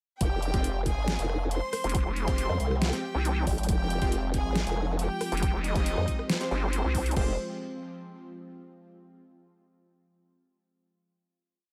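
A dry, aggressive and heavy dubstep drop with a half-time feel, built on an overdriven, knocking electronic kick and an overdriven kit of deep snare, bright hats, rim clicks and crashes in a small room. Two up-front wobble basses carry the weight, one a saturated formant-sweep bass with chorus and changing wobble speed, the other a nasal, resonant vowel-sweep bass entering at 1.8 seconds. Above them a rich, earthy violin section plays a repeating riff in octaves with delay, a morphing wavetable pad with phaser and sidechain pumping holds sustained chords from 1.5 seconds, and punchy, airy supersaw stabs echo sparsely in the background before a final chord rings from 7.2 seconds.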